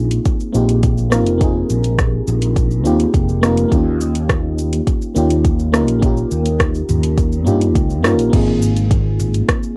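A round, warbling FM electric piano with chorus, cassette tape and tape echo opens alongside a growly, punchy fretless bass in this sunny, smooth sunset chillout excerpt at 104 BPM in Ab major, moving from Fm7 to Eb7. A smooth R&B kit with metallic hats, rim click, shaker and toms joins at 0.1 seconds, and a deep, overdriven electronic kick up front follows at 0.3 seconds. The band hits an accent at 8.0 seconds before settling on Ab6 at 8.3 seconds, all in the moderate booth ambience of a home cassette recording.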